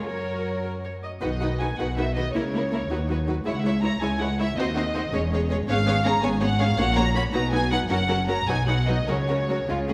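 A cheerful, graceful classical-period movement for string orchestra in 6/8 with a rubato feel opens at once with a dark, woody, up-front violin section carrying the lush, vibrato-rich melody over a second violin line and soft-edged, intimate violas, while a pure, floating cello section and a warm, smooth-topped double bass section share the bass, every section bowed sul tasto in a moderate scoring-stage reverb, in a fragment cut from a longer piece.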